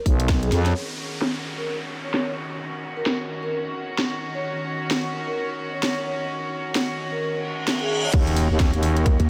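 A growling, thick FM bass and a tight, overdriven electronic kick punch in at 0.1 seconds and return at the 8.1-second drop of this swaggering, bouncy bass house excerpt at 130 BPM in Eb minor with a swung 16th feel, while a cracking garage kit of snare, hi-hat and crash runs throughout, a close-miked, ringing vibraphone carries the melody through diffuse delay, a distant, earthy chamber string section holds a pumping Ebm7 chord, a downlifter, reverse cymbal and impact mark the transition, and a heavy, chorused pluck wobble bass enters at 9.2 seconds, inside a dreamy mix soaked in huge reverb.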